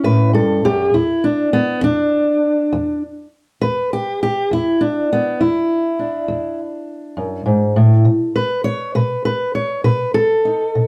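A wet studio reverb places this short acoustic country blues cut further back in the room. A lone fingerpicked steel-string guitar carries it from start to finish with a dark, concert-style tone and audible finger squeaks, rolling through a swaggering 12/8 feel. The harmony moves from A7 to a bare E7 and lands on B7 at 8.1 seconds, giving the passage a rollicking, swaggering strut.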